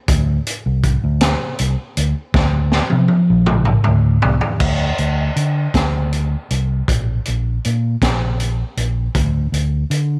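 Mysterious and dark, this short excerpt of psychedelic rock moves at a slow 53 beats per minute, counted in dotted quarters across a straight 6/8. A fingered electric bass and a raw garage drum kit play together from the start, both sitting up front in a dry space with little reverb. The bass has a round, amped tone and ranges from Bb1 up to D3. The kit sounds small-roomed and gritty, with a punchy kick, a high-tuned snare, hi-hat, toms and crash cymbal, its character saturated, warm and mid-forward with a rolled-off top. A drum fill runs from 2.3 to 4.6 seconds, carrying the music into a second section that continues until the bass stops at 10.2 seconds.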